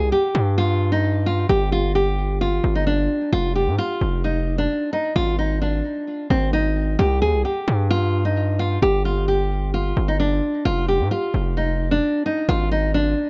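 Melancholic and brooding, this short piece of trap-leaning hip hop moves at 131 BPM in 4/4 with a half-time feel, settled in C minor. A fingerpicked nylon-string guitar carries the melody from the start, its classical, acoustic tone softened by a low-pass filter and trailed by tape echo, with finger squeak audible. Beneath it, a distorted 808-style bass sits up front, heavy and aggressive, its sine body roughened by a saturated noise layer, each note striking with a fast attack before decaying. The harmony cycles through minor and open power-chord shapes, and the bass drops out at 13.1 seconds, just before the guitar ends at 13.3 seconds. A light reverb and small room ambience frame the pair, and the dark, rolled-off top end deepens the gloomy atmosphere of this fragment cut from a longer track.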